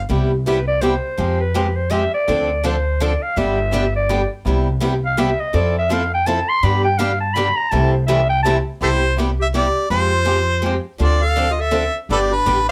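Swung eighths at 165 BPM in a lilting 3/4 drive this playful, swinging piece of acoustic string swing in C major, where two bright, boxy picked acoustic guitars (one parlour, one swing-style) accompany a woody, thumpy pizzicato upright bass on gut strings, while an up-front, raspy, growling clarinet with subtone and light vibrato takes the solo from 0.1 s before a smooth-topped harmonica with tongue slaps and scooped notes, heard briefly at the very start, returns to carry the melody from 8.8 s, all within a moderate small room.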